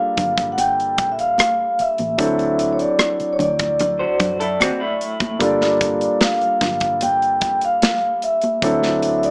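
A mellow, ringing vibraphone carries the melody over a warm grand piano, punchy up-front drums, a round, dark muted bass and bright, dry congas in the background of this smooth, silky 1970s-style soul cut at 75 BPM in G dorian, moving between Gm9 and D9 chords, while a twangy, slightly broken-up electric guitar with tremolo plays a brief riff over the D9 chord from 4.0 to 5.4 seconds, all with light reverb and a small-speaker sound.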